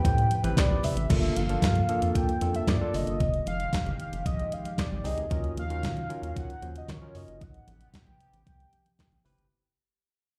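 A slick, danceable early-eighties boogie funk groove at 114 BPM opens on a velvety, chorused synth lead with slapback echo carrying the melody over a barky tine electric piano and a hushed, shimmering pulse-width pad. Up front, a thumpy, sampler-style drum machine with fat snare, handclaps, hi-hat and crash drives the beat alongside a rubbery, bouncy square bass and very quiet thick-skinned congas. The harmony moves from Am9 through Gm9, Fm9 and Ebm9 before returning to Am9, all heard as if through a club PA at a live gig, with the music fading out from 1.1 seconds to the end at 9.5 seconds.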